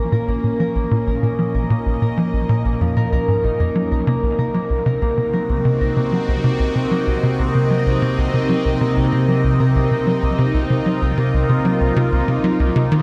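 Ambient, sequencer-driven space music at 95 BPM in a straight 4/4, this cut from a longer piece feels expansive and cosmic as it moves from B-flat minor to a C diminished chord at 3.8 seconds. An evolving wavetable pad holds sustained chords throughout, its detuned unison voices morphing through a phaser, built-in reverb and shimmer reverb, and it fades in across the whole passage. A tight sequencer bass drives a punchy, saturated riff up front, its wave-folded tone given a filter pluck, a moving notch, subtle chorus and tape echo, with a filter sweep running from start to finish. A concert harp plays bright, ringing arpeggios through tape echo and shimmer reverb, sitting a little further back than the other two parts. A huge ambient reverb with a 7.5-second decay soaks the dreamy mix.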